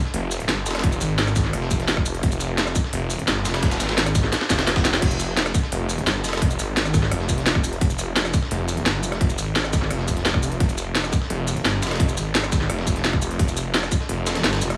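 A snarling, distorted sawtooth bass growls up front from 0.1 seconds, sitting low between F1 and Ab1 in F minor beneath a crisp, cracking drum and bass kit of hi-hats, rim clicks, shaker, crash and snare, while a gritty, pitched-up breakbeat kit sits in the background and a tight, tape-warm electronic kick joins at 0.8 seconds, driving this dark, mechanical, technical drum and bass at 172 BPM through a drum fill at 4.3 seconds in a dry studio sound.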